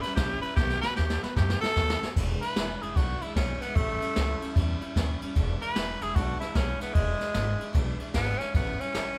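Recorded with light reverb as a band playing live in one room, this short, upbeat rockabilly excerpt cut from a longer piece has a natural feel, with the drums and saxophone up front. At 150 BPM in 4/4 with a swung eighth-note feel in E mixolydian, it rollicks along as a growling tenor saxophone carries the melody with a raspy, gritty tone and light vibrato, opening with a solo passage. A brush-played drum kit with dark cymbals, a medium-tuned snare and a boomy kick adds a fill from 0.6 to 2.2 seconds, where the music moves into its second section. Underneath, a pizzicato upright bass with gut strings sounds woody and thumpy, while a picked steel-string dreadnought acoustic guitar gives bright, full-bodied accompaniment with audible finger squeak. The harmony opens on a rootless A7 followed by B7, then settles into a run of E7 and A7.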